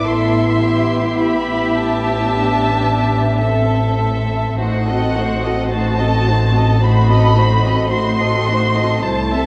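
A muted violin section carries the melody high above the ensemble in this slow, elegiac classical passage for string orchestra, cut from a longer piece, its veiled, distant tone shaded with vibrato. Beneath it, a second violin section with a soft attack and smooth top carries a second line alongside a close-sounding viola section that supplies the accompaniment. Cellos sit in the background and a lush double bass section anchors the bass. Every section plays con sordino with the bow, giving the sound a dark, melancholic cast. The music moves at 53 BPM in 4/4 with flexible rubato, resting on A minor before turning to an A diminished seventh chord at 4.6 seconds, all within a generous recital-hall reverb that lends the strings the resonance of a church or concert hall.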